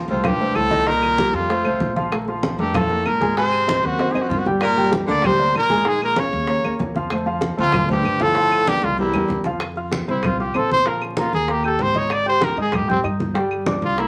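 A moderate studio reverb and a layer of vinyl crackle frame this sunny, sophisticated Afro-Cuban jazz excerpt in F major at a brisk 192 BPM. Up front, a clear trumpet carries the melody with light vibrato, while a close-miked baritone saxophone adds a scooped, vibrato-laden second line in the background until 9.4 seconds. A warm concert grand piano with deep bass and short sustain, a thumpy pizzicato upright bass, low-tuned thick-skinned congas, tight high-tuned bongos and woody claves drive the groove, and after a drum fill the trumpet takes a solo from 9.6 seconds.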